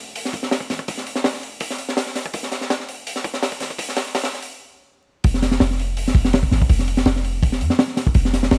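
A deep, boomy 808-style bass with a sine body and a noise layer opens this dark, nostalgic drum and bass excerpt in F minor, moving between F1 and F2 at 165 BPM in a straight 4/4. At 0.2 s a crunchy breakbeat kit joins, an acoustic small-room sound of hi-hat, punchy kick and high-tuned snare, saturated and gritty with a rolled-off top, sitting up front in the mix. The bass notes have a fast attack and a mellow decay, and both the bass and the kit are high-pass filtered. The opening stretch builds up until a stop at 4.5 s, and the drop arrives at 5.2 s, carrying the jungle groove to the close. The recording is dry, with little reverb, and vinyl crackle runs beneath it, lending a dusty, vintage cast.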